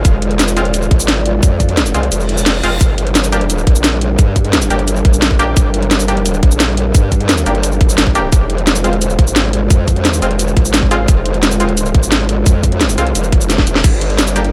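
Tense and futuristic, this dark technical drum and bass drop moves at 174 BPM in a straight 4/4, shifting between Fm and Gm chords. A growling, aggressive growl bass sits up front, wobbling through a formant filter with overdrive, chorus and sidechain pumping that give it a saturated, compressed bite. Behind it, a deep, moody analog pad holds sustained chords in the background, its detuned square, sawtooth and triangle layers, sub octave and ring modulation roughened by vintage 12-bit sampler grit. A nasal, band-passed chord stab enters at 0.6 s with bright, decaying hits carried by chorus and digital delay. The tight electronic kick drum and the drum and bass kit sit up front, with a cracking snare, metallic hats, shaker and crash cymbal. The kick drops out at 2.1 s as a reverse cymbal sounds in the background, and a drum fill at 13.5 s closes this excerpt from a longer piece.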